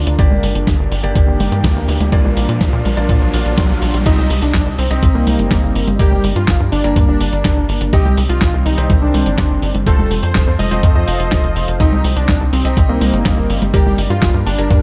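Italo disco at 124 BPM with a nostalgic, bittersweet mood: a tight, punchy sequencer bass with a nasal sawtooth bite sits up front alongside a gritty, thumpy electronic kick and a dusty soul sampler-style kit of congas, handclaps, hi-hat, medium-tuned snare and crash, both tape-warm and re-recorded in a large room. Behind them, a lush, detuned unison pad with chorus holds sustained chords while a bright grand piano, its action noise audible, adds stabs over a Gm, Bb, Cm and F progression, and an electronic riser sounds until 4.1 seconds. At that point a thick, bold unison lead with vibrato and delay takes the melody, giving this excerpt from a longer piece a dark production with light reverb.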